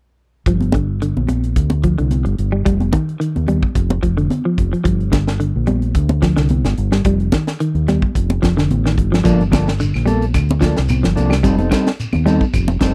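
A clean electric guitar picks arpeggios with spring reverb over a round, dark fingered bass, a tight funk drum kit with a high-tuned snare, and ringing, hard-hand congas. Together they drive this defiant, intense afrobeat groove in G minor at 109 BPM, with a light swing and harmony moving between G minor and F-based chords. At 9.2 s a mellow electric guitar adds up-front stabs with lush chorus, joined by a grainy, distant shekere and woody claves in the background, all in a dry, close 1970s-style studio sound with a faint mains hum.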